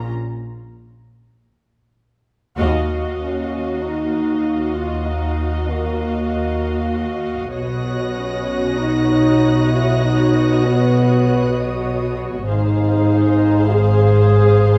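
Cinematic suspense film score in free time, uneasy and mysterious, where muted violins carry a veiled melody in the background over lush muted violas and dark, soft-attack cellos and double basses. An ensemble accent at 2.6 seconds brings in a second violin line, and a warm, tight French horn section enters at 3.2 seconds with sustained chords that sit up front, moving through D#madd9, Badd9 and G#6. High con sordino violins add a lush, veiled texture from 7.5 seconds, all bathed in the moderate reverb of a recital hall in this fragment of a longer piece.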